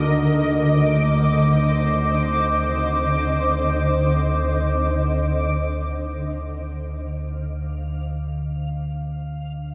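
Dark ambient drone in free time opens with all three parts at once: a low analog drone, a granular cloud pad and a high backwards texture, set in a huge, wet reverb that makes the space feel vast and ominous. Up front, the analog drone holds the bottom with a sawtooth and pulse-wave tone, its pulse-width modulation and chorus giving it a warbling, vintage character that stays mellow as it evolves. The granular cloud pad sits up front beside it, sustaining detuned sine chords that feel blurred and full-bodied, moving from an Eb5/D colour to D minor near 5.9 seconds before falling away at 6.0 seconds. Above them, the reversed texture adds a bright, dreamy shimmer, its triangle tone swelling with a soft attack through granular and shimmer reverb. The drone and this dreamy upper layer carry on together until the excerpt cuts off at 9.7 seconds, part of a longer piece.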